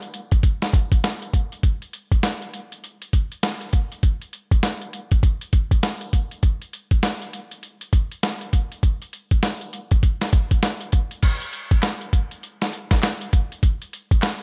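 The piece opens on a boom bap sampler-style drum kit, up front and dry, its crash cymbal, hi-hat, kick drum and snare drum carrying a slick, confident R&B groove in 4/4 with a swung sixteenth-note feel. The kit sounds compressed and pitched down, with a gritty edge, a thumpy kick and a medium-tuned snare. At around 11.2 seconds the music moves into a new section, and shortly after, at 11.8 seconds, a group handclap joins in the background. The claps are human and crisp, with an acoustic, small-room character that sits behind the drums. The drums and claps both play through to the end at 14.4 seconds, where this cut from a longer piece stops.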